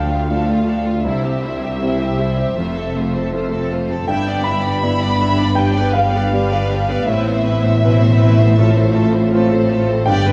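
A violin section carries the melody in this moving, bittersweet cinematic passage, its bowed, vibrato tone expressive and lush with a soft attack. A second violin section, woody and shadowed, sings a higher line above it. The music moves at 80 BPM in 4/4 with a rubato feel, tuned to A4 = 441 Hz, over chords that run from Dm through C, F, Em7/G and G to Amadd9 and F/A. In the background, a rich viola section and a smooth, vintage-toned grand piano fill out the accompaniment, while a distant, even cello section and a double bass section hold the bass. A dark French horn section sustains tight, very quiet chords, and a concert harp adds bright, ringing fingerpicked arpeggios at a whisper, all heard throughout the 10.3-second excerpt in a moderate scoring-stage reverb.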